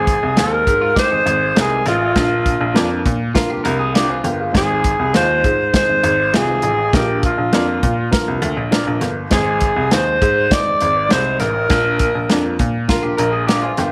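Joyful, danceable 1960s-style soul in a straight four, cut from a longer piece, with a raspy, growling alto saxophone leading the melody up front, roomy and gritty with vibrato and a slapback echo. A bright baby grand piano with audible action noise carries the bass line, a woody, slightly detuned upright piano comps in the background, and an airy acoustic drum kit drives things with a punchy kick, medium-tuned snare and hi-hat over chords alternating between Ab and Bb. Two compressed, slightly broken-up electric guitars through a small old amp fill in: a dark, lo-fi one plays very quiet stabs throughout, while a picked one with spring reverb plays a riff from 0.8 s and returns at 12.9 s, all in a small room with light reverb.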